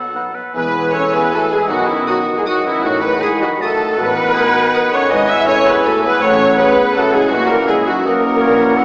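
A 3/4 waltz at 160 BPM with uneven, rubato beats opens this elegant, sweeping orchestral ballroom excerpt in E major, where a dark, very quiet violin section carries the melody over a rich second violin line, smooth-topped oboe, mellow distant clarinet and airy silver flute, while an up-front viola section and soft bassoon accompany, a roomy French horn section holds sustained chords, a faintly ringing harp spins arpeggios, and cello and double bass sections enter by 0.6 s to anchor the bass, all bathed in a wet scoring-stage reverb with a small-speaker sound.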